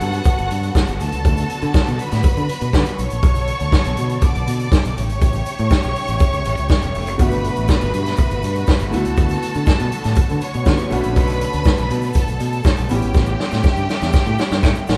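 A glamorous, sultry disco groove in B minor at 121 BPM opens with everything but the piano already in motion: an up-front vintage drum kit with a punchy kick, medium-tuned snare and hi-hat, a bright, punchy fingered electric bass, and a very quiet, grainy tube shaker. Above them, a distant, intense violin section carries a bowed second line with vibrato, while a rich, smooth string section holds sustained chords in the background. The harmony cycles through Gmaj9, D6, Bm7 and A7, giving the short cut from a longer piece a lush, late-night sheen. A warm, smooth grand piano enters at 7.2 seconds as background accompaniment. Near the close, the drums play a fill from 13.1 seconds and the piano adds its own fill from 14.1 seconds. The band sounds like it is playing live in one room, with a moderate large studio reverb lending space.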